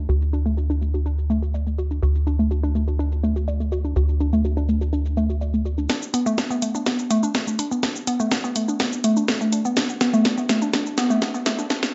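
A straight 4/4 drive carries this dark, cinematic melodic techno excerpt, where a woody, wave-folded pluck arpeggio with chorus, phaser and digital delay sits up front over a tight, saturated sawtooth sequencer bass that stops at 5.9 seconds, just as a punchy, tape-warm kick enters in the background and the house kit's cracking snare, hi-hat and shaker drive a fill-laden build-up through a moderate room reverb.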